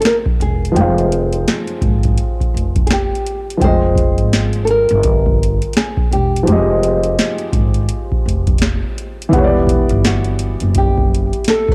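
This lo-fi hip hop cut, taken from a longer piece, carries a nostalgic, melancholic mood with a swung 4/4 feel. A dark, small-sounding fingerpicked nylon-string guitar carries the melody throughout, colored by cassette tape, over a felt-muted upright piano whose soft, mellow, intimate tone sits up front with audible action noise and short sustain. A booming analog drum machine, also up front and tape-warm, supplies a deep kick, a tonal snare and metallic hats. An upright bass enters at 0.4 seconds and stops at 11.3 seconds, its woody, growly pizzicato given extra grit by tube saturation. The harmony rests on Fm9 before shifting to Em9 at 9.3 seconds, and the whole mix has the hazy intimacy of a home cassette recording in a small room with light reverb.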